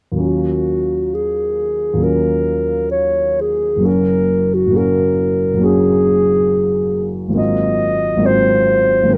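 A warm recording with light reverb presents a brief cut from a longer impressionist classical duo in Eb minor, hazy and wistful, drifting in a rubato 4/4 at about 63-70 BPM. A dark grand piano sits up front and opens the accompaniment at 0.1 seconds, ranging from low Gb1 to Gb4 beneath chords of Ebm9, Gbadd9 and Ab13. From 0.2 seconds a mellow solo clarinet carries the melody in classical style, close and with a smooth top across its Gb4 to Eb5 range, and both parts continue to 9.2 seconds.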